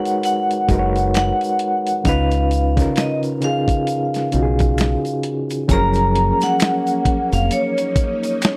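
Soulful and relaxed, this short neo-soul R&B excerpt in F# major sways at 66 BPM with a 16th-note swing, as a ringing hard-mallet vibraphone carries the melody over a barky, overdriven reed electric piano with fast tremolo, a gritty, compressed sampler-style drum kit with a thumpy kick, soft tube shaker and finger snaps, and a round, dark fingered electric bass, until a silky string machine with ensemble chorus adds sustained chords at 5.7 seconds, all captured in a dry, close 1970s-style studio sound.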